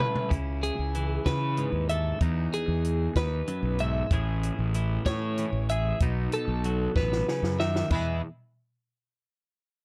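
Math rock and midwest emo, playful and intricate in 6/8, this clip opens with a short fill on a dry, compact cocktail kit with a high-tuned snare and a punchy kick, together with a clean, up-front twelve-string electric guitar picking arpeggios; at 0.3 seconds a bright, twangy second twelve-string joins as accompaniment alongside a growly, fuzz-overdriven fingered bass, and they move through C#m7, Emaj7, Amaj7 and B7 to a second drum fill at 7.0 seconds in a dark, close-sounding production.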